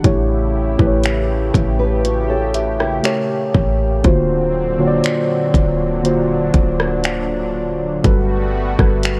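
A trap drum kit sits up front with a hard-clipped kick, bright hi-hats, finger snaps and rim clicks, its electronic sound re-recorded in a small room. This excerpt of contemporary R&B moves at a slow 60 BPM in a straight 4/4 and carries a sensual, longing mood. Muted, felt-like synth keys play the accompaniment in a soft, dark, intimate tone with a touch of chorus, while a clean 808-style bass adds deep, boomy, mellow low notes. Behind them, a lush unison pad holds thick, nasal, detuned chords with chorus and sidechain pumping. A small nylon-string guitar enters in the background for thumb-plucked arpeggios from 1.8 to 3.3 seconds, finger squeak audible. The harmony moves from A7 through A7b9 and D7alt to Gmaj9 at 8.0 seconds, all wrapped in light reverb and the warbling pitch drift of worn cassette tape.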